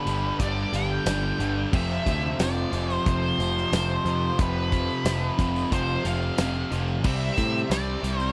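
Swaggering and driving, this short classic rock excerpt moves at 90 BPM in a straight 4/4, sitting on G before shifting to F at 1.7 seconds and landing on C at 7.1 seconds. Up front, a dark octave-fuzz lead guitar carries the melody with wah and distortion, while a growling picked electric bass, overdriven and punchy, anchors the low end. Behind them, a cranked stack guitar with overdrive and phaser plays the riff alongside two crunchy overdriven guitars, one bright and the other a very quiet, double-tracked, warmer layer. A big rock drum kit brings a fat snare, punchy kick and bright cymbals, joined by a distant, jingly tambourine, and a very quiet tonewheel organ holds sustained chords with key click, chorus vibrato and a slow rotary speaker. The dry, close recording has the feel of a 1970s studio session.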